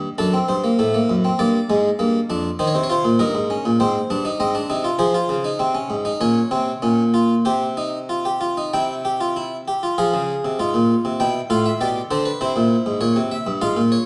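A Flemish-style harpsichord, plucked and round on a single set of strings, sits up front as the sole voice in this baroque-style three-part fugue in F minor. The mood is joyful and elegant, moving at 99 BPM in a straight 4/4, with the instrument tuned to A4 = 436 Hz and spanning F2 to G5. A wet recital-hall reverb with a 1.4-second decay surrounds the playing and lends the hall's air to the instrument's warm tone. The harmony travels from D7/F# through Gm, Eb7, Ab and Fm to Bbmadd9, then settles from Csus4 onto C. At 10.0 s a new section begins on Fm and pushes through G7 to C7 before this passage, cut from a longer piece, ends at 14.1 s.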